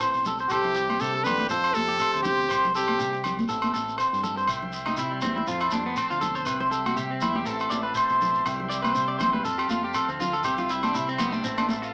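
A small speaker sound in a modest room frames this joyful, danceable highlife guitar band excerpt at 121 BPM in C major, with a lightly swung sixteenth feel over a cycle of Am, C and F. A brilliant, forceful trumpet carries the melody up front until 3.2 seconds, shadowed by a veiled, growling bucket-muted trombone, while a slightly broken-up guitar with slapback echo spins arpeggios. Ringing agogo bells, a grainy shekere, high-tuned hard-hand congas and a dark, round fingered bass drive the groove, and from 4.5 seconds a clean, picked guitar takes a solo as a buzzy combo organ sustains chords above.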